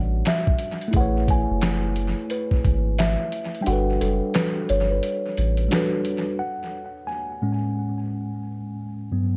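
A woody, ringing kalimba melody opens this dreamy, cosy lo-fi hip hop fragment over a worn, slightly out-of-tune tine electric piano and a deep, round dub sub bass, with muffled sampler-style drums of handclaps, hi-hat, thumpy kick and snare arriving at 0.3 s with 12-bit grit. Swung sixteenths and lush ninth chords drift through a hazy, echo-heavy cassette atmosphere, with tape echo on the kalimba, piano and drums, and the kick drops out at 3.7 s. From 6.4 s the mellow electric piano plays alone to the end.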